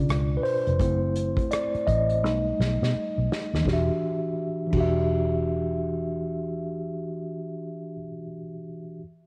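A mellow, clean tine electric piano with a cassette-tape tint sits up front, playing a solo over jazzy chords from C#7b9 to Em9 in this smooth, introspective neo-soul R&B passage, while a dark, round, foam-muted fingered electric bass sits beneath it. An acoustic drum kit played with bundle sticks, with a punchy kick, medium-tuned snare, rim clicks, hi-hat and crash, carries a sixteenth-note swing in 4/4 and plays a fill from 2.2 to 3.7 seconds before dropping out at 5.0 seconds. A light studio reverb surrounds this home cassette recording.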